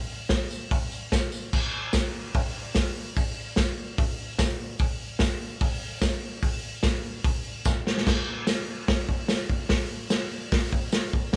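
A straight 4/4 rock beat drives this gritty, raw excerpt at 147 BPM, carried by an up-front vintage drum kit with a punchy kick, a medium-tuned snare, hi-hat and dark crash cymbals, its rolled-off top giving a mid-forward acoustic sound. A jingly tambourine sits in the background, and the kit plays a fill from 7.7 to 8.1 seconds before the music moves into a new section. Light reverb and a faint mains hum give the feel of a band playing live in one room.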